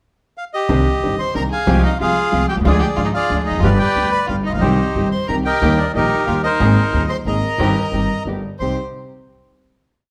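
A reedy, mid-forward bandoneon leads this short, melancholic and sultry tango waltz, stating a motif-based melody in period phrases from 0.4 seconds, within a brief pickup bar. A dark, mellow concert grand piano with deep bass supplies the accompaniment, while a woody, thumpy pizzicato upright bass with steel strings anchors the harmony, both in waltz time with the accent on one and a flexible, rubato feel. From 1.2 seconds a single bowed violin adds a second line, expressive with vibrato, portamento, soft attack and octave doubling. Very quietly beneath them, a veiled, con sordino chamber string section plays close, bowed stabs in the same waltz pulse. The band plays live in one room with moderate large-studio reverb, moving through a minor-key progression that settles on a final chord at 8.6 seconds.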